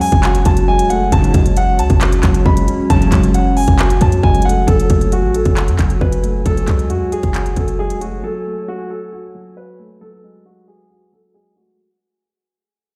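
A dark, boxy concert grand piano carries a melancholic melody with low-pass filtering and tape echo over its own mellow accompaniment, a hollow, flute-like pad with chorus, an up-front trap kit with a hard-clipped kick, crisp hats and handclaps, a deep, boomy 808-style bass, and brief bold, fat analog synth brass stabs from 1.1 to 3.2 seconds, in this brooding half-time trap excerpt at 135 BPM in F# minor, heard in a stone-room reverb, where the drums stop at 8.1 seconds and a filter sweep and fade-out begin at 4.7 seconds.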